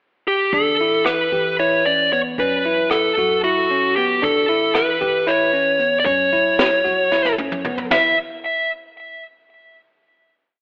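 Through a rough, telephone-filtered home-demo mix washed in moderate plate reverb, this short, driving and tense progressive instrumental in E dorian moves in 7/8 at 228 BPM (eighths), with a dark, overdriven lead guitar up front playing a motif-based melody through digital delay, a bell-like electric piano repeating a bright arpeggiated ostinato, a woody pizzicato upright bass sitting in the background, and a brushed jazz kit with a punchy kick and high-tuned snare that plays a fill from 7.1 to 7.9 seconds before the final note.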